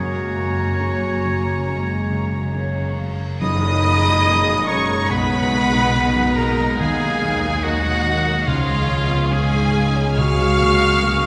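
Rubato phrasing at 71 BPM in 4/4 gives this uplifting, tender cinematic film-score passage in F# major an unhurried, breathing pulse, heard in a fragment cut from a longer piece and bathed in the wet reverb of a church. A warm, expressive violin section carries the melody over second lines from a bright, present solo oboe, an airy flute, a mellow clarinet heard only until 2.5 seconds, and a focused background violin section. Beneath them sit a very quiet felt-muted upright piano with audible action noise, smooth violas, dark French horns holding soft chords, ringing fingerpicked harp arpeggios, and rich cellos with distant double basses, while a close, very quiet tam-tam joins with an accent at 3.4 seconds as the harmony moves through Bmaj7, Ebm and Db toward Gbadd9/Db.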